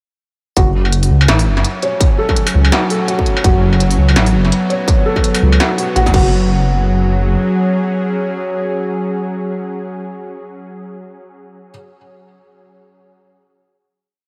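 A distorted electronic kick, an industrial drum kit, a dark detuned saw bass and a felt-muted upright piano all arrive together at 0.6 seconds, launching straight into the drop of this dark, tense half-time drum and bass piece at 167 BPM in F# minor, with a swung sixteenth-note feel. The kick sits up front, while the sparse half-time beat of the kit brings a clanging snare, crisp hats, crash and struck metal into a studio reverb. The bass holds long, rumbling, saturated notes with a beating, detuned edge, and the piano repeats a soft, intimate sixteen-step arpeggio, its action noise audible and its short notes trailed by tape echo. A string-like, bowed-sounding drone joins at 1.5 seconds with bright sustained chords that carry a noise layer, ring modulation, vibrato and a pumping sidechain. From 6.3 seconds the piece closes on a final hit over an F#5 chord, the drone ringing on until 9.8 seconds.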